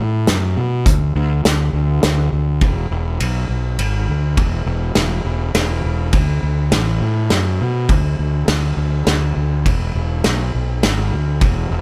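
Post-rock in a straight three-four, hopeful and cinematic, this short excerpt pairs an up-front, growly fuzz bass with overdrive, playing low and entering from the start, with a loose indie drum kit of hi-hat, tight kick, ride and a medium-tuned snare in a small, pumping room, the pair moving from an opening passage into a new section at 2.6 seconds in a dry mix.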